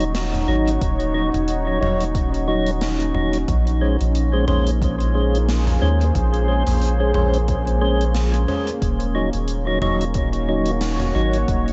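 A soft, round dub sub bass sits up front and carries this hazy, deep ambient dub piece, moving between Eb1 and Eb2 at 90 BPM in 4/4 with a lightly swung 16th-note feel in Eb dorian. Above it, a dark, warbling pad holds sustained chords through a detuned, chorused haze with built-in reverb and the grit of a vintage 12-bit sampler. A mellow, percussive tonewheel organ adds stabs through a slow rotary speaker and dub echo. A gated 80s kit of hi-hat, snare and toms sits low in a bright stone room with its own dub echo, and a tape-warm electronic kick joins at 0.8 s. The harmony moves from Ebm7 to Bbm9 at 3.5 s and back to Ebm7 at 8.8 s. The mix has light reverb and small-room ambience, with a softened top end that deepens the hazy mood of this short excerpt.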